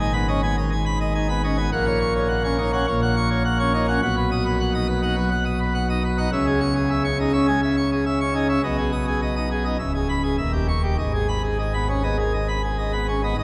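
A cathedral's long, wet reverb, lingering for about 6.6 seconds, surrounds a solo pipe organ that still sits up front in the sound. This is a classical organ toccata in G# minor at 104 BPM in a straight 4/4, tuned to A4 = 441 Hz, and its mood is majestic and dramatic. The organ plays on a plenum registration with mixtures and a baroque voicing, giving a full, brilliant tone that spans from C#1 up to D#6. The harmony moves from G# minor through F#/A#, B and C# minor, then gathers tension over C#m7 and D#7b9 before settling back on G# minor at 11.0 seconds. The fragment, cut from a longer piece, lasts 13.4 seconds.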